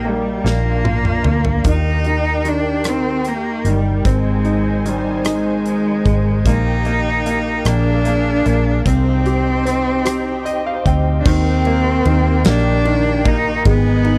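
A dry, close 1970s-style studio sound frames this heartfelt, swaying pop ballad in Eb major, slow at 50 BPM in 6/8 and tuned slightly flat to A4 = 438 Hz. A biting, up-front bowed cello with vibrato carries the melody over a worn, slightly detuned upright piano whose woody action noise is audible, a nasal sawtooth pad thickened with chorus, and a round, foam-muted fingered electric bass. A huge arena kit with a fat snare, punchy kick and bright cymbals enters at 0.5 s with a fill, the piano adds a fill at 10.1 s, and the harmony turns to an Abm at 13.7 s.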